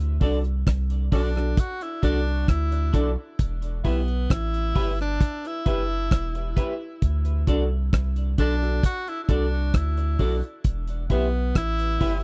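Meditative and laid-back, this short roots reggae excerpt moves at an unhurried, straight 4/4 pace over chords that alternate between D and E minor. A deep, round dub sub bass opens at 0.0 seconds, soft yet fast in attack and sustained, sitting up front. From 0.2 seconds it is joined by a dry, acoustic 70s drum kit whose tight kick, hi-hat and rim click are also placed close and forward, while a clean, twangy electric guitar adds picked accompaniment, colored by a subtle chorus and tape echo, and a woody, natural upright piano supplies stabs in the middle register. At 1.1 seconds a bright tenor saxophone takes the solo melody in a pop style, its vibrato trailed by tape echo. The whole piece has the close, intimate feel of a 1970s-style studio recording.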